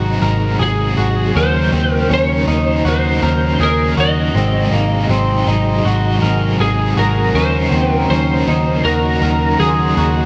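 Dream pop at 80 BPM in Eb dorian, haunting and hazy, where a round, punchy muted bass sits up front under a crunchy overdriven guitar with tremolo, a soft flute-like tonewheel organ holding chords in the background, twangy chorus-and-delay guitar arpeggios, and a very quiet, bell-like celesta, while a slide guitar carries the melody from 0.6 s, all soaked in a dreamy plate reverb over chords moving between Ab7 and Ebm7.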